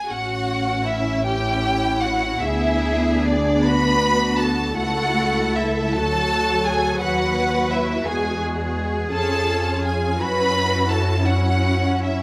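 Classical string orchestra music, this slow romantic movement in 6/8 moves with a warm, serene mood and a freely breathing rubato. The first violins carry the melody up front with a focused, close tone and vibrato, while the second violins weave a smooth, lush second line beneath them. Dark, expressive violas fill out the accompaniment, and the double basses anchor the bass with a rich, even sound and light vibrato. The cellos join at 1.2 s, adding a smooth, bowed voice that blends into the ensemble. The harmony drifts gently through shifting chords, and the close, detailed recording sits in a moderate recital hall reverb with a faint mains hum in the background, in a passage cut from a longer piece.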